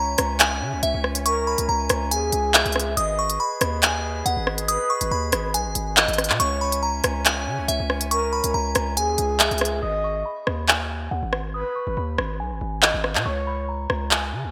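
A bright, 1980s-style digital production set in a lush hall reverb carries this tense, ominous drill cut in G# minor at 140 BPM with a half-time feel, moving between C#m and G#m. A delicate, tinkling FM synth bell plays the melody over a heavy, distorted 808-style bass and an up-front electronic drill kit of crisp hats, handclaps and rim clicks under gated reverb. A soft, flute-like synth lead with vibrato adds a second line from 1.3 s, and a mellow small flute group holds unsteady, breathy chords until a break at 9.8 s, where a filter sweep runs over the bell until the excerpt ends at 14.5 s.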